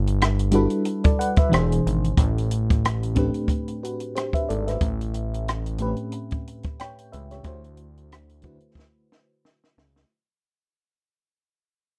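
R&B and neo-soul at 91 BPM, this sensual, warm excerpt from a longer piece rides a swung sixteenth-note feel over a dark, dry mix, moving from Gmaj13 through E7b13 and Am11 to A9 and D9 as it fades out. A fat, thick analog bass with a detuned sawtooth tone and filter sweep sits up front beside a compact acoustic cocktail kit with a punchy kick, high-tuned snare, rim clicks and hi-hat. From 0.5 seconds a mellow, round FM electric piano shimmers with chorus, phaser and tremolo, and the drums close with a fill from 8.8 seconds.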